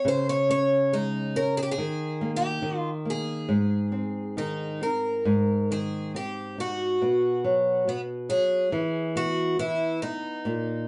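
A bright, shimmering picked twelve-string acoustic guitar carries the octave-doubled melody up front, with fresh strings and audible finger squeak, over a warm, fingerpicked flamenco guitar accompaniment in this nostalgic, tender fado-style ballad excerpt, played rubato in 2/4 by a band performing live in one room with a wet studio ambience and a softened top end.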